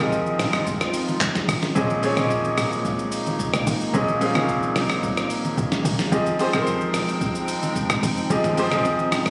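Amapiano at 110 BPM in F minor, soulful and late-night, with an up-front grand piano carrying Fm9 and Bbm11 chords over a gritty, tape-warm sampler-style drum kit with a thumpy kick, handclaps, shaker and rim click, a tight, punchy log drum bass and a hollow, flute-like pad pumping with chorus in the background, ringing low-tuned congas entering at 0.3 seconds very quietly, all caught in a short cut with a phone-in-the-room sound, light reverb and compression.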